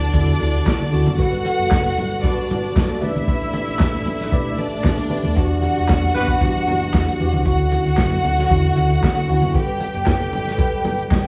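A smooth, dark soul drum kit with a tight kick and handclaps drives this celebratory, glamorous disco excerpt at 115 BPM in D major, joined by a round, punchy hollow-body electric bass, a mellow tine electric piano, and lush bowed strings carrying a second line. Distant French horns hold sustained chords in the background, while very quiet congas and a grainy shaker fill out the percussion. A short stab from a roomy horn section at 6.2 seconds marks a band accent over chords moving from Dmaj9 through Gmaj9, A9sus4 and Em9, all set in a large studio reverb that makes the band sound as if it is playing live in one room.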